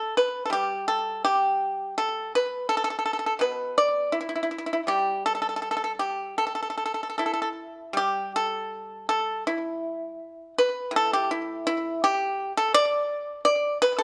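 Chinese traditional music for solo plucked strings, this flowing, elegant passage is cut from a longer piece and moves in a free, rubato 4/4 at roughly 76-86 BPM in the A shang mode. A single acoustic pipa carries everything from 0.0 to 14.0 seconds, played with fingerpicks across a span from A2 up to D5. Its tone is percussive and dry, sitting up front in the mix, with a slapback echo trailing each note. The instrument is captured by close, detailed microphones in a lightly reverberant space. Around 8.0 seconds the music turns to a new section that carries on to the end.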